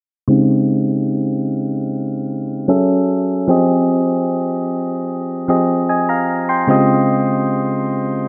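R&B at 75 BPM with a sensual, moody air, this brief excerpt features soft electric-piano-like synth keys, round, warbling and vintage in tone with chorus, a low-pass filter and a filter sweep, playing up front from 0.3 to 8.3 seconds through chords such as Dbmaj9#11, Gbm9 and Fm9 in a moderate, lush hall reverb.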